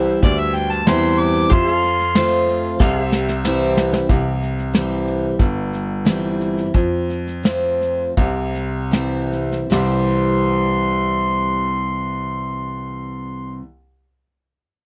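A bright, full-bodied jumbo acoustic guitar picks chords in C major with audible finger squeak over a clear, boxy grand piano bass line, while a clean pedal steel with lush chorus and volume swells hovers in the background until 4.1 seconds; meanwhile a mellow, vintage harmonica with scooped notes takes an up-front solo, and an airy brush kit with a punchy kick adds a fill before this easygoing, sunny honky-tonk and classic country tune at 74-93 BPM slows down, the drums dropping out near 9.9 seconds as the harmonica returns at 9.7 seconds in a dry, close 1970s-style studio take cut from a longer piece.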